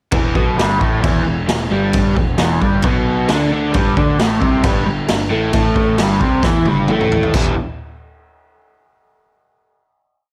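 A straight 4/4 garage stomp groove drives this short, complete garage rock piece at 133 BPM in E minor, its raw, swaggering mood carried by an up-front acoustic drum kit with a boomy kick, medium-tuned snare, toms and crash cymbal, saturated and gritty with a rolled-off top. A double-tracked, overdriven electric guitar plays a picked octave riff with phaser, moving from Em to G5, while a fuzz-laden electric bass doubles it in driving eighth notes. A drum fill from 6.4 s leads into a final Em chord ringing out at 7.3 s, all set in a small room with light reverb.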